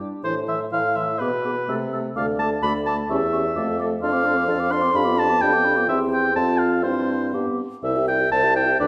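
In a quick 2/4 with a rubato feel, this spirited, lively classical-period movement for wind quintet is a brief cut from a longer piece. The clarinet opens alone at the very start, mellow and distant in the background, and the other four parts join at 0.2 s. The concert flute carries the melody up high, pure and hollow with vibrato, a soft attack and lifted highs, yet it sits back in the mix, while the oboe, up front with light vibrato, plays a second line. Beneath them the French horn adds a warm accompaniment, and the roomy bassoon anchors the bass from a forward position. The harmony shifts from minor to major midway through and arrives on C at 7.8 s, all heard through the reverberant ambience of a recital hall.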